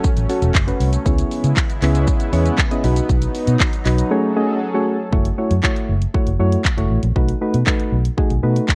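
Dance-pop with a driving, energetic feel, built on punchy layered electronic drums with handclaps, hi-hat, kick and shaker, a dark, round, foam-muted electric bass, soft warbling electric-piano-like synth keys with chorus, a lush detuned sawtooth pad that drops out at 5.1 seconds, and a very quiet crisp group handclap, with the keys, pad and bass pumping against the kick and everything colored by worn cassette-tape pitch drift and light digital ambience, with a silent gap at 4.1 seconds before the second section.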